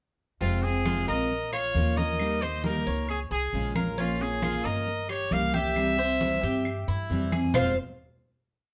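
A punchy, vintage-toned trumpet opens this short, nostalgic and sultry Cuban son piece in F minor at 134 BPM, stating a motif-based solo melody with scooped notes up front, alongside a full-bodied strummed acoustic guitar with muted slaps, a metallic double-strung tres picking an arpeggiated guajeo, and a dark, thumpy upright bass playing a tumbao that anticipates the chords. Low-tuned congas with hard-hand slaps and open strokes sit in the background, joined at 0.9 s by woody claves tapping a two-bar time line. The band plays live in one room with moderate studio reverb, moving through a single verse before settling on a final F minor chord at 7.5 seconds.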